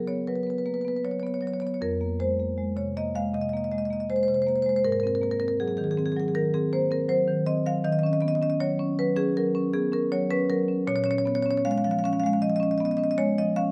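Reflective and hypnotic, this 13.7-second fragment of a contemporary classical piece for solo marimba moves at a rubato 79 BPM in 4/4, its medium-hard mallets drawing a full, close-miked, up-front tone from F2 to F5 in a light reverb as the harmony drifts from Db7sus4 through Fm7, Ab9 and D#m7 to A#m7.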